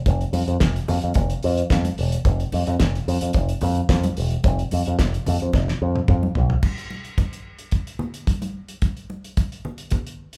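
A punchy, up-front picked electric bass pushed through an envelope filter drives this joyful, danceable disco excerpt, played live in one lightly reverberant room alongside a dry, dark 70s drum kit with a fat snare and tight kick and bright, close congas sitting in the background, until the bass stops at 6.5 seconds as a drum fill from 5.5 to 6.6 seconds carries the drums and congas into a new section.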